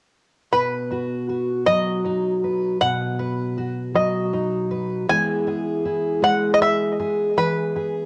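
A homespun cassette sound frames this short folk fragment, with a moderate spring reverb and the intimacy of a small room giving it a nostalgic, uplifting glow. At a relaxed 53 beats per minute in a straight 6/8, a bright, twangy bluegrass banjo carries the melody from 0.5 to 8.1 seconds, its percussive fingerpicked attack colored by tape and trailed by an analog delay. Beside it, up front as well, a full-bodied steel-string dreadnought guitar supplies fingerpicked accompaniment across a deep range, with a finger squeak adding a human touch. The harmony rests in B major on a B chord before moving to E at 5.1 seconds. Cut from a longer piece, it feels like a fond memory caught on an old home tape.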